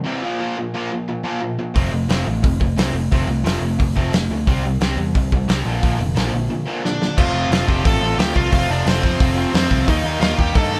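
A straight 4/4 punk rock pulse drives this upbeat, energetic excerpt from a longer piece. Two overdriven guitars open on riffs, one bright and distorted and the other a raw garage tone sitting in the background, before drums and bass join at 1.8 s. The loose indie kit is acoustic and up front, with dark cymbals, a medium-tuned snare, a tight kick and a rolled-off top in a small-room sound, while the picked electric bass comes through amped, growly and punchy. During a short break and drum fill, a smooth overdriven lead guitar takes the melody from 6.9 s with a warm, picked tone. At 7.2 s a very quiet, double-tracked cranked stack guitar adds to the riffing as the music moves into a new section, and the whole band sounds like it is playing live in one room with light reverb.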